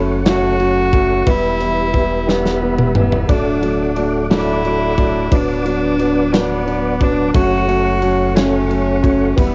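Dramatic and aching, this slow six-eight pop ballad at 59 BPM sets a rich, reedy gut-string cello melody, entering at 0.3 seconds alongside an up-front studio drum kit with punchy kick, snare, toms and bright ride cymbal, over intimate concert grand piano accompaniment with audible action noise, a deep, round sine sub bass, and a soft, flute-like tonewheel organ holding sustained chords in the background through chorus vibrato and a fast rotary speaker, with a drum fill at 2.3 seconds, cassette tape coloring the piano, organ, cello and drums, light reverb and faint mains hum in a home recording cut from a longer piece, as the chords move from F#m through Em, D and Bm/D back to F#m.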